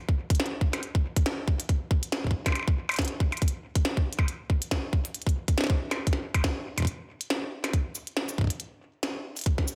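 A swung 4/4 groove in sixteenths drives this cerebral, melancholic IDM fragment, cut from a longer piece. A tight electronic kick sits up front beside a glitchy kit of tiny snare, clicky hi-hats, cabasa and percussion blips treated with tape echo, both parts tape-warm and re-recorded in a large room under light reverb. A brief break from 6.9 to 7.7 seconds sets up a new section that carries the beat through to the end.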